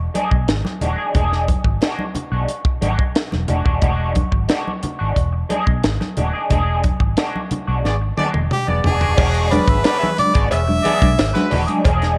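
Funk with a strutting, energetic feel: a tight drum kit with a high-tuned snare and a dark, foam-muted fingered bass drive the groove under a slightly broken-up wah guitar and background congas, until a band accent from 6.5 seconds and a drum fill at 7.8 seconds bring in a warm horn section, an up-front, clear harmonica with tape echo and scooped notes, and at 9.2 seconds a reedy electric piano with fast tremolo plus a metallic cowbell, all in a small, lightly reverberant room.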